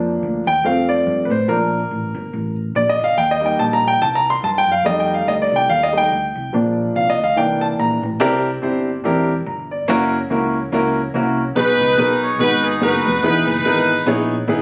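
A natural, up-front baby grand piano leads this jubilant, hopeful uptempo gospel excerpt, taking a solo through the opening 8.2 seconds over a swung 4/4 groove at 143 BPM in Bb major. A dark, round, punchy hollow-body electric bass, fingered and amped, runs underneath from start to finish at a lower level than the piano. The harmony moves through bright major changes and colourful sevenths and ninths before lifting into B major at 11.6 seconds. At that moment a warm, jazz-style horn section enters with the melody, sounding distant and roomy as an ensemble yet still sitting up front alongside the piano. The whole piece was caught on a phone in the room, with a light touch of studio reverb adding space, and it is cut from a longer performance.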